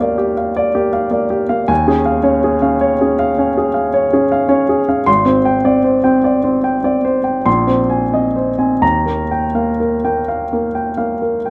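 A slow, rubato 9/8 pulse drifts between 41 and 56 BPM in dotted quarters, giving this short impressionist solo piano passage in Eb major a hazy, luminous mood. A baby grand, natural and up front, spans Ab1 to C6 as the harmony glides from Ebmaj9 through Dbadd9/Eb, Abmaj7#11 and Bb9sus4 before settling on Ebadd9 at 8.8 seconds. Light reverb and a dark, warm production wrap the instrument, and the fragment, tuned to A4 = 439 Hz, is cut from a longer piece.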